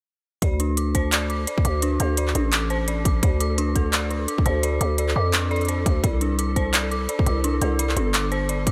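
Spacious and heavy, this half-time drum and bass excerpt moves at 171 BPM in D minor with a swung sixteenth feel, sitting on D minor before shifting to C5 at 6.0 seconds. A growling, buzzy 808-style bass and a hard-clipped electronic kick sit up front beside an overdriven electronic kit of handclaps and crisp hats. Above them, an eerie, inharmonic FM synth bell plays arpeggios through chorus, 12-bit sampler grit, a low-pass filter and digital delay, while a pulsing, tempo-synced gated texture of detuned triangle voices holds an A4 in the background, all within a light digital ambience from 0.4 to 8.7 seconds.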